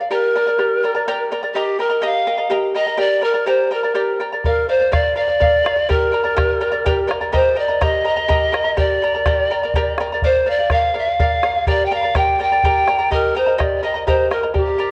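Earthy and wistful, this Andean folk piece moves in a straight 6/8 at 83 BPM, set in G minor and cut from a longer performance. A fingerpicked charango opens at once, its doubled strings giving a shimmering, acoustic glow, with some strings doubled at the octave. A breathy, polished pan flute carries the melody from 0.1 s, its woody tone touched with vibrato and a soft attack, sounding both distant and up front. At 4.4 s a round, close and dry bombo joins as the passage repeats, grounding the ensemble until the end. The harmony cycles among G minor, E-flat and B-flat, and the whole recording sits in a moderate stage reverb with the worn, warbling pitch drift of old cassette tape.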